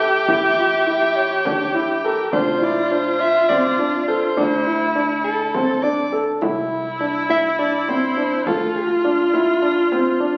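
Set in a restless 7/8 at 206 BPM counted in eighths, with a straight feel, this contemporary chamber piece in D minor has a pensive, searching mood and is cut from a longer work. A breathy soprano saxophone carries the melody in a jazz style, with vibrato, a soft subtone and scooped notes, before it drops out at 9.0 seconds. Beside it, a clear, smooth viola played by a single bowed player holds a second line up front, while a dark, mellow concert grand piano sits close with arpeggios over deep bass tones. Further back, a woody, growly upright bass is plucked on steel strings, and a frame drum played with soft hands adds close, dry percussion from 0.3 seconds. The harmony moves from A7 through F5 and Dsus2 to C and then D minor as the music shifts into a new section at 6.4 seconds, all heard through a recital hall reverb and the crackle of a very old 78 rpm record.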